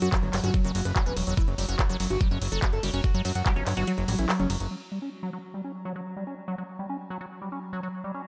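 Alien and driving, this psychedelic trance excerpt at 144 BPM in 4/4 opens on a drop with an up-front knocking electronic kick that stops at 3.5 s, a tape-toned kit of handclaps, metallic hi-hats and ride cymbal, a fat, detuned, wave-folded analog bass, and a gritty, screaming, guitar-like overdriven synth lead with vibrato, phaser and digital delay, which all fall away by 4.7 s, leaving the squelchy, resonant liquid acid bass riff, with phaser, dub echo and a filter sweep, pumping over an evolving, morphing wavetable pad in the background until 8.3 s.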